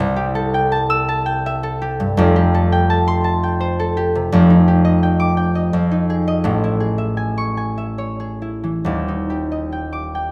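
A concert harp plays alone, up front and ringing, its fingerpicked strings reaching from Eb1 up to E6 in a serene, graceful classical piece in 3/4, moving with a rubato feel at roughly 67-86 BPM. Its lush harmony drifts from Am7/C through Fadd9 and Fm7 to Amaj7 and Ebmaj7. The warm acoustic tone blooms in a reverberant recital hall across this 10.3-second excerpt of a longer work.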